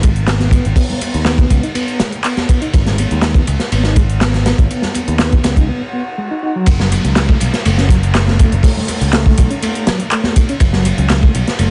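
Energetic and swaggering, this short breakbeat cut at 122 BPM in F# dorian pairs a crunchy, gritty breakbeat kit with dark cymbals and a punchy kick with a tape-warm analog drum machine's handclaps and hi-hat, a picked electric bass up front, a mellow, reedy electric piano riff with fast tremolo and delay, very quiet high-tuned congas entering at 0.4 seconds, and a background swell and downlifter from 5.9 seconds, across the break and on into the drop at 6.7 seconds, all in a small room with vinyl crackle and a rolled-off top.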